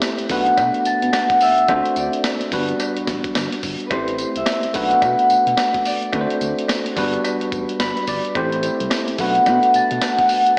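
Punchy and bouncy, this new jack swing R&B excerpt moves at 108 BPM in 4/4 with a swung sixteenth-note feel, cycling through Bm7, D7, Gmaj7 and Am7 in a dreamy, reverb-soaked hall with an AM radio sound. Up front, a ringing, fingerpicked concert harp carries the melody over a bright, bell-like tine electric piano that slips in a fill at 7.5 seconds. A gritty, compressed breakbeat sampler-style drum kit with thumpy kick, medium-tuned snare, hi-hat and tambourine anchors the groove, while a dark synth bass glides underneath with portamento and a dry, metallic cowbell sits in the background.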